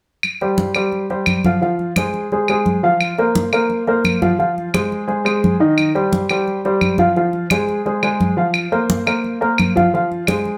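This salsa excerpt in C minor moves at a fiery, driving 173 BPM in straight 4/4, with the tuning set to A4 = 437 Hz. Claves and congas open together at 0.2 seconds, the claves woody and set in a live room, the congas thick-skinned and medium-tuned with an acoustic small-room character. An upright piano joins at 0.4 seconds as the accompaniment, sitting up front with a smooth, vintage, slightly detuned tone and long sustain across a range from Eb3 to F5. The harmony circles through C5, Fm, Bbsus2, Fm, Cm and back through Fm and Bbsus2 to Fm within a single section. A moderate studio reverb gives the whole a touch of space before the cut at 10.6 seconds.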